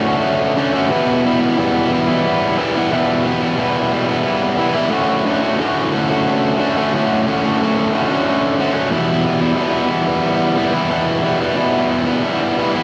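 A distorted electric guitar carries this short rock excerpt on its own, bright and up front, its picked, double-tracked lines ringing from D2 up to F#4 for the full 12.8 seconds. Slapback echo trails each phrase, giving the tone a snappy doubled edge against a light reverb and a digital ambience. The mood is euphoric and soaring, moving at 90 BPM in a straight 3/4. The harmony alternates between Dmaj7 and Em, settling on Dmaj7 at 4.9 seconds and returning to Em at 8.9 seconds. Cut from a longer piece, it plays as a single section built around the guitar alone.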